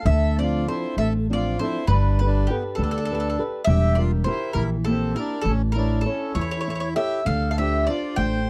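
Wistful and romantic, this brief Italian folk serenade in D minor drifts in a rubato 6/8 at 66 BPM, moving through Dm7, Gadd9, Edim and A before settling back on Dm7. A mellow, round mandolin with double strings carries the melody up front, while a reedy, full accordion with tape echo sings a second line and a dark, fingerpicked flamenco guitar supplies the accompaniment. A woody, thumpy pizzicato upright bass sits prominently underneath, all captured in a dry, close 1970s-style studio sound.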